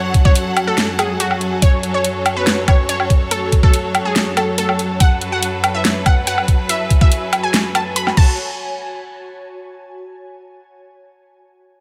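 This heavy, aggressive wobble dubstep excerpt opens with three parts at once: a detuned unison pluck carrying the melody, a bright studio string section holding sustained chords, and an ethereal, airy pad. The pluck has a punchy, fast attack and decaying tail, with ring modulation, a filter sweep, vintage 12-bit sampler grit and dub echo giving it a gritty, metallic edge. Behind it, the bowed strings sound biting and lush with vibrato but sit distant, pumping against the sidechain, while the slow-attack pad drifts through ensemble chorus, phaser and its own reverb. Over a half-time feel, an up-front electronic kick knocks hardest of all. A tape-warm drum kit of huge snare, metallic hi-hats, crash cymbal and woodblock fills out the beat. The drums, pluck and strings drop away near 8.4 seconds, leaving the airy pad alone in light digital ambience until 10.0 seconds.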